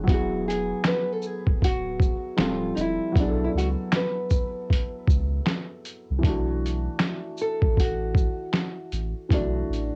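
A felt-muted upright piano, dark and intimate under a low-pass filter, opens this reflective, melancholic lo-fi hip hop excerpt alongside a deep, round dub sub bass, moving at 78 BPM in B dorian with a 16th-note swing. A fingerpicked nylon-string guitar carries the melody up front, while a thumpy, pitched-down sampler-style drum kit of kick, snare, hi-hat, shaker and finger snaps sits loudest with overdrive, 12-bit grit and cassette tape coloring. After passing through E9, Dm7 and B5, the harmony settles onto Bm7 as a new section begins at 6.2 seconds, all within a light reverb and a homemade cassette sound.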